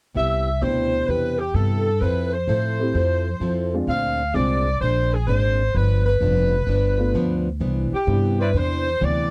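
Joyful and energetic, this short cut from a longer big band swing piece in C major moves at 129 BPM, with a bright, vibrato-laced saxophone section carrying the melody up front over a woody pizzicato upright bass, picked steel-string acoustic guitar with audible finger squeak, and an intimate grand piano whose action noise can be heard, while a warm trumpet section lands a single brief stab at 8.4 seconds, all captured in a dry, close 1970s-style studio sound with light reverb.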